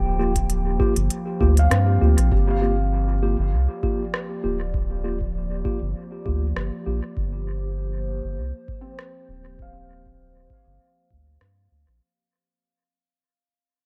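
A round, nasal analog bass sits up front in this hazy, meditative ambient dub excerpt in G minor at 99 BPM, with a light 16th-note swing over a Gm7 chord. A warbling, detuned pad holds sustained chords with chorus, reverb and vintage sampler grit, while a felt-muted upright piano plays soft arpeggios through a low-pass filter and tape echo, with a filter sweep on it from 2.3 s as the whole excerpt fades out. A clean tine electric piano adds dub-echoed stabs until 7.0 s, and a deep electronic kick and a crisp hi-hat and rim-click kit enter together at 0.4 s, all in a dry mix.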